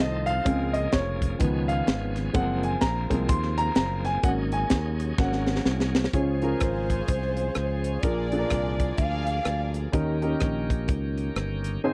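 A natural-sounding baby grand piano takes a solo over the first 6.1 seconds of this uptempo, jubilant gospel cut in Db major, swinging at 127 BPM over a tight, high-tuned funk kit, punchy bright fingered bass, and a full, shouting tonewheel organ lightly overdriven through a slow rotary speaker, with a drum fill arriving at 5.2 seconds. At 6.1 seconds a breathy, bamboo-toned bansuri with a soft attack and a slightly unsteady straight tone carries the melody alongside a lush, bowed studio string section with vibrato and a smooth top. The close, dry 1970s-style studio sound carries light reverb and keeps the piano, bass and drums up front.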